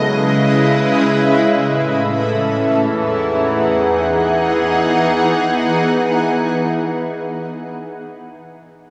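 In free time and E major, this blissful, ethereal dream pop fragment from a longer piece rests entirely on a bright, warbling, granular ambient pad sustaining chords with slow attacks, long releases, chorus and an octave-up shimmer, moving from C#m7 to A at 1.6 seconds and Emaj7 at 2.8 seconds, all sitting up front in an echo-heavy mix with a wet echo chamber reverb and a hint of small room ambience.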